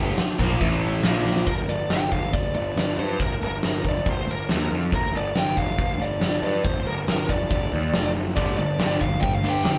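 A huge arena drum kit with a fat snare and punchy kick drives this aggressive hard rock excerpt from 0.2 seconds, alongside a growly, fuzz-laden picked bass up front that plays from the very start, while two overdriven guitars, one with a phaser and the other a bright semi-hollow, riff in the background at the start and again from 8.4 seconds, and a smooth, dark overdriven lead guitar carries the melody from 1.5 seconds after a drum fill, all in a live-room sound with light reverb.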